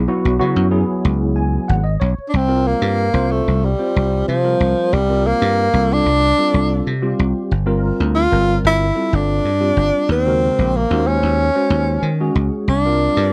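Nocturnal and driving, this straight-feel jazz piece moves at 93 BPM in 4/4 and is cut from a longer performance. A foam-muted, thumbed slap bass sits up front from the start, punchy and direct, while a clean tine electric piano, heard through its built-in speakers and treated with ensemble chorus, supplies the accompaniment and slips in a fill from 1.1 to 2.3 seconds. At 2.3 seconds a breathy tenor saxophone takes the solo melody, mellow and up front, with a soft attack, scooped notes, vibrato and a tape echo trailing its phrases. The harmony drifts through minor-seventh colors such as Dbm7, Gm9 and Ebm7 before settling on a suspended C7sus2. The sound is dry and close, like a 1970s studio session with little reverb.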